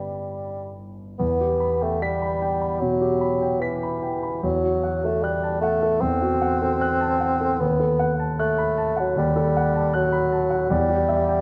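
Romantic classical chamber music, solemn and yearning, in which a dark bassoon sings an up-front melody with light vibrato over warm grand piano accompaniment at a rubato 75 BPM in E minor, the harmony moving from E minor through a half-diminished chord to B7 and back to E minor, all set in a wet recital hall with a 1.5-second reverb, in this 11.4-second fragment cut from a longer piece.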